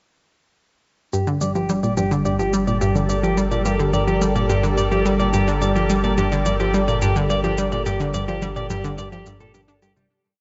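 Bathed in a huge 8.0-second reverb with a rolled-off top, this cosmic, expansive piece of space music opens at 1.1 s with a detuned sawtooth pluck up front, cycling a six-step loop that drifts against the bar. Around it sit a twangy clean electric guitar picking a three-step arpeggio loop through tape echo and a filter sweep, a round sine sub bass holding the root, a light, tape-warm machine pulse of shaker and congas, and a lush, thick unison pad of slowly shifting chords colored by chorus and phaser. At 4.5 s a very quiet pulsing gated texture adds a held high note, and the whole piece fades out from 7.1 s.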